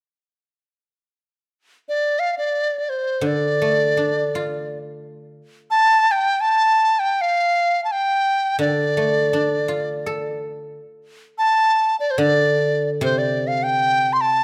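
In free time and the D yu mode, this wistful, graceful fragment of Chinese traditional chamber music opens with a large bamboo dizi at 1.9 s carrying the melody in a pure, buzzing-membrane tone with vibrato and crisp attacks, joined at 3.2 s by a ringing, silvery guzheng played with fingerpicks as accompaniment, both set up front in light reverb.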